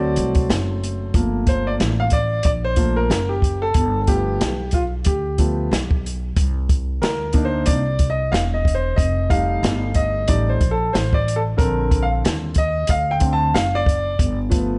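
An intimate grand piano with audible action noise, a boxy tone and long sustain takes the lead throughout this mellow, nocturnal jazz-hop excerpt, backed by a woody, bright pizzicato upright bass and a dark, smooth acoustic drum kit with a punchy kick that joins at 0.2 seconds, all with a swung feel and a small-room ambience.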